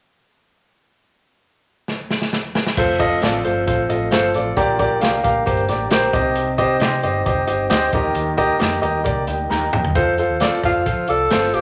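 Uptempo 1960s-style soul at 134 BPM in F mixolydian, danceable and uplifting, opening with a drum fill on a crunchy, saturated breakbeat kit with a tight kick and dark cymbals before a clear, woody upright piano and a round, foam-muted vintage bass arrive at 2.8 seconds. A lightly overdriven tonewheel organ with key click and slow rotary holds sustained chords in the background, while a very quiet, slightly broken-up electric guitar adds picked stabs through a small old amp. Everything sits in a moderate large studio reverb, and at 10.7 seconds a breathy, whispered tenor saxophone steps up front with scooped notes and an intimate jazz vibrato.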